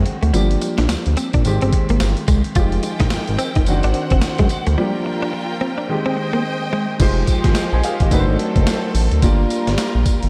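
A close, intimate grand piano with audible action noise, a clean, direct-recorded electric guitar riff shimmering with analog chorus, and a smooth, up-front sawtooth-and-square synth bass open this bouncy, punchy new jack swing excerpt. A gritty, compressed sampler-style drum kit with a thumpy kick, high-tuned snare, hi-hat, crash and tambourine drives the swung groove, while a focused studio string section with vibrato and a smooth top adds sustained chords from 2.6 seconds. During a break that begins at 4.8 seconds, the guitar drops out at 6.9 seconds, and the dreamy, reverb-soaked hall carries the lush minor-seventh and ninth chords to the end.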